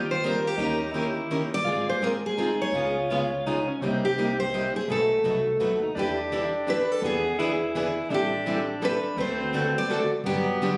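Virtuosic and swinging, this excerpt of jazz manouche in a lilting 3/4 features a bright, up-front picked steel-string acoustic guitar carrying the melody through tape echo, while a breathy alto saxophone with subtone and scooped notes weaves a vintage second line, a pizzicato upright bass adds a woody, thumpy low end, and a picked archtop guitar with old strings and a boxy plugged-in parlour steel-string guitar supply the accompaniment, all captured by a phone in a small room.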